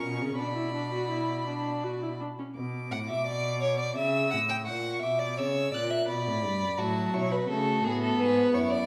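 In a straight 3/4 at 85 BPM, this baroque-style fugue for string quartet in B minor moves with a solemn, driving pulse, the first violin carrying the melody in a smooth, even voice with vibrato while a rich second violin weaves a second line beneath it. The viola adds expressive, sliding accompaniment before dropping out at 2.5 seconds and returning at 6.8 seconds, and the cello anchors the bass with portamento and vibrato, sitting up front. The bowed quartet rings in a reverberant recital hall, heard here as a brief portion of a longer piece.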